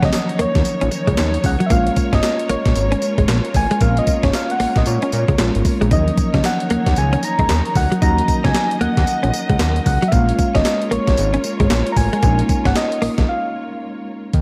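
New jack swing R&B at 114 BPM with a bouncy, punchy swung groove, driven by a crisp, thumpy 8-bit drum machine playing kick, snare, hi-hat, handclaps and tambourine, and by a fat, detuned sawtooth analog bass with a filter sweep, while a round, gentle FM synth lead with chorus and slapback echo carries the melody over lush bowed strings, a mellow tine electric piano and a clean, scooped electric guitar riff, the piano and guitar sitting in the background, all moving between Ebm7 and Bbm7 before a brief break at 13.3 seconds in this piece cut from a longer track.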